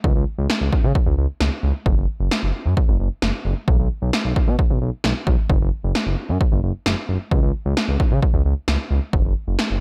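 Heard in a digital ambience, this short cut from a longer synth-pop track moves at 132 BPM in a straight 4/4 with a cool, driving mood. An up-front analog drum machine supplies a punchy kick and snare with a tape-warm colour and gated reverb. Alongside it, a smooth, detuned synth bass blends sawtooth and square waves and glides between notes with portamento, its fast attack and sustained, mellow tone spanning F#1 to C#3, with both parts sounding from the start to roughly 9.8 seconds.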